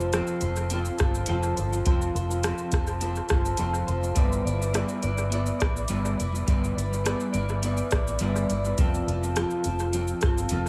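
Hazy and nostalgic, this short indie and bedroom pop fragment moves at 104 BPM in 4/4 with a light sixteenth-note swing, resting on F before shifting to G6 at 4.2 seconds and returning to F at 8.8 seconds. Up front, an electric guitar through a small old amp plays slightly broken-up, compressed, picked accompaniment, bathed in lush chorus, vibrato and analog delay, while a dark, round, foam-muted fingered bass holds the low end with a punchy, amped tone. A soft vintage rhythm box, also up front and touched by analog delay, sets a deep kick, metallic hi-hats, rim clicks and shaker in a tape-tinged, echo-heavy mix with light reverb and digital ambience.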